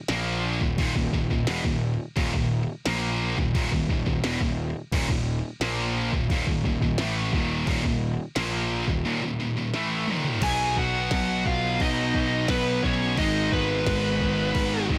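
Heavy metal, dark and crushing, where three bright, picked high-gain and fuzz-drenched rhythm guitars churn a riff behind a round, overdriven fuzz bass and an up-front glitchy electronic drum kit with a soft kick and tiny snare, until a drum fill at 9.7 seconds brings in a pair of dark lead guitars at 10.4 seconds, one carrying the melody up front and the other a lower second line behind it, all in a dry, blown-out recording.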